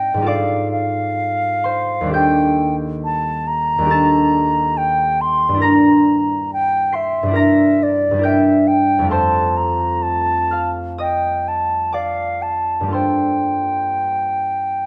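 The concert flute carries the melody up front with a pure, straight tone and a crisp attack, singing between D5 and C6 across the whole 14.9 seconds. Beneath it, the concert harp supplies a mellow, fingerpicked accompaniment that rings out over a broad span from Eb2 to C7, sitting just as close to the listener. This hazy, mysterious impressionist duo moves in G minor at a slow 60-70 BPM in 4/4, with a rubato feel that lets the time breathe. The harmony drifts through colourful chords, opening on F9/Ab, easing into Ebmaj7#11 and Gm6, and settling on Gm11 at 12.9 seconds. A moderate recital hall reverb surrounds both instruments, and the gently rounded top end adds to the veiled atmosphere of this passage, cut from a longer piece.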